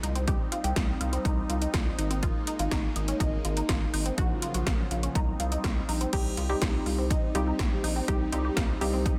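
Synth-pop at 123 BPM with a driving, melancholic mood, this short cut moves through Cm, Absus2 and Gbmaj7/Bb over a round, deep analog bass and up-front 80s electronic drums with a punchy kick, gated snare and metallic hats. A swirling, wave-folded pad carries sustained chords through phaser and chorus, while a squelchy, resonant blip pluck spins arpeggios through phaser and delay. At 6.1 seconds a funky, detuned polysynth joins with chorused comping, all set in light reverb under a dense, heavily limited modern master.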